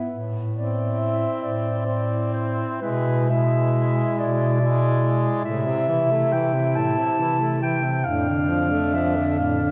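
Solemn and melancholic, this short fragment of a lyrical classical piece for single-reed quartet sways in an unhurried, rubato 6/8 as a mellow, distant clarinet sings the melody up front over a clear alto saxophone with vibrato on the second line, a tenor saxophone with light vibrato and a soft attack in the accompaniment, and a warm, smooth-topped bass clarinet anchoring the bass, all bathed in a wet church reverb while the harmony moves from Am through E7/B and back to Am before settling on Dm/F.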